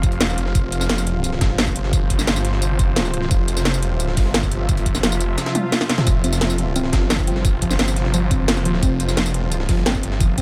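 A snarling, distorted sawtooth bass anchors this dark, tense excerpt of technical drum and bass, sitting up front with a growling, detuned unison tone, tube saturation and a bright, compressed edge that pumps against the kick. Beneath it, a swarming granular drone holds sustained chords with a slow attack and its own reverb, evolving restlessly and also pumping with the kick. The main drum kit is up front, with a cracking snare, metallic hats, tambourine and toms. It is joined by a knocking electronic kick, both tape-warm and re-recorded in a small room. Deep in the background, a gritty, compressed breakbeat sampler kit adds high-pass filtered hats and a high-tuned snare. A very quiet electronic swell and a drum fill arrive at 5.5 seconds, and from 6.1 seconds a soft, round pluck begins playing arpeggios, dark and wave-folded, with chorus and delay, in an otherwise dry, loud mix.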